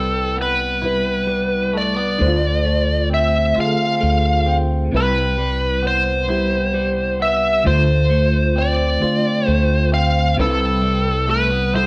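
Slow six-eight R&B at 44 BPM in C major, this brief excerpt cut from a longer piece has a warm, sensual mood. A bluesy overdriven lead guitar carries the melody up front, its distorted, picked tone sitting between A4 and F5. Beneath it a clean electric guitar plays a second line with a compressed, twangy bite, while a mellow FM electric piano supplies soft, round accompaniment colored by chorus, phaser and tremolo, with a faint noise layer under its fast, decaying attack. A mellow fretless electric bass anchors the low end with a dark, round tone, staying between C2 and D2. The harmony sways between Cmaj7 and Dm7, and the band, playing live in one room, is wrapped in a moderate large studio reverb.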